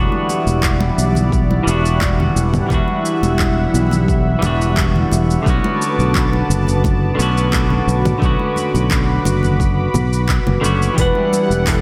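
A growly, punchy fretless electric bass sits up front in this relaxed sunset chillout excerpt, sustaining low notes under an E dorian groove at 87 BPM in a straight 4/4. A semi-hollow electric guitar plays clean, picked, compressed accompaniment with a low-pass filter and tape echo, while a thick, detuned sawtooth pad with a slow attack and chorus holds warbling, vintage-toned chords. An overdriven deep house drum kit with metallic hats, handclaps and shaker is soon joined by a deep, overdriven electronic kick, and very quiet acoustic congas add a small-room touch. The harmony moves from Em9 to Bm7 at 5.5 seconds and returns to Em9 at 11.0 seconds, when a dark, fingered electric guitar enters with a brief melody. A lush hall reverb soaks the whole mix, giving it a dreamy, spacious glow.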